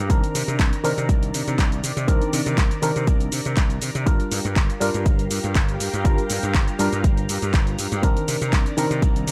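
A lightly swung 121 BPM groove drives this groovy, funky filtered disco house excerpt in C minor, with an up-front, punchy layered electronic kick, an analog drum machine's handclaps, hi-hat and shaker pumping against it, and a barely audible tambourine. Over this, a glassy, bright slap bass and a barky, reedy electric piano, lightly overdriven with fast tremolo, phaser and sidechain pumping, ride a low-pass filter through Cm9, Gm7 and back to Cm9, while a lush, vintage sawtooth string machine with ensemble chorus sustains chords in the background under light reverb.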